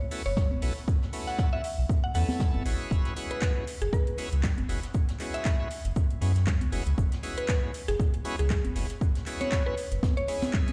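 A smooth, late-night deep house excerpt at 118 BPM with a swung 16th feel opens on bright, shouting tonewheel organ stabs with key click, a slow rotary speaker, light overdrive, sidechain pumping and dub echo. Alongside them come a layered kit of metallic, overdriven hats and handclaps, and a brushed jazz kit in the background with a high-tuned snare and shaker. From 0.3 s a woody, round FM mallet pluck carries the melody with chorus and delay over a deep sine-and-triangle sub bass with octave that sits up front and pumps, while an overdriven electronic kick and close, dry congas struck with hard hands join at 0.4 s, all resting on a single F#9sus4 chord heard through a big sound system in a bare room with large studio reverb.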